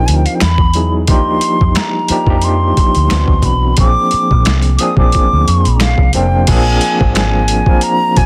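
A dense, heavily limited modern master with digital ambience frames this relaxed neo-soul and R&B fragment at 89 BPM with a lightly swung 16th-note feel, where a hollow, close-miked concert flute sings the melody with vibrato over an overdriven, barky tine electric piano running through a combo amp with fast tremolo. Underneath, a dark, round, foam-muted electric bass and an up-front, pitched-down boom bap drum kit, entering at 0.1 s with a thumpy kick, high-tuned snare, finger snaps, hi-hat, crash and gritty overdrive, carry the groove. Lush chords such as Emaj9, Ebmaj9, D13 and Bb9 color the harmony before a new section arrives at 6.5 s.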